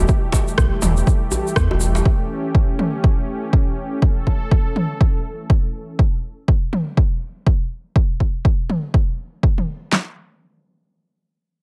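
A detuned sawtooth pad with a soft attack and a chorus sheen opens this earthy, hypnotic afro house excerpt, its smooth sustained chords pumping against the sidechain beside a round, dark bass that sits up front. Almost at once a layered electronic deep house kit arrives, overdriven and forward, with a punchy kick, a fat snare and handclaps. A grainy, bright egg shaker, a medium-tuned djembe heard in a live room, and a second kit layer of rim clicks and toms fill out the swung sixteenth-note groove as the harmony moves from E minor to A7. The bass, shaker and djembe fall away at 2.0 seconds, and the pad follows at 6.0 seconds, leaving the drums to carry on in a digital ambience. From 9.9 seconds the closing stretch drops the chords entirely, with only the main kit of kick, snare and handclaps continuing briefly.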